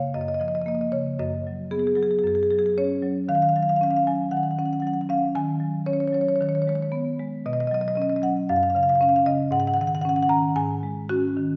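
Played rubato around 115 BPM in 4/4, this short contemporary classical passage, cut from a longer piece, features a solo marimba struck with medium mallets across a span from F#2 to A#5, with a playful, warm mood. The marimba sits up front with a woody, dark and smooth tone, and it moves through lush harmonies such as F#maj7, D#m9 and Badd9 before settling on G#7sus4. A wet recital hall reverb with a 1.4-second decay gives the 11.6 seconds the resonant air of a church or concert hall.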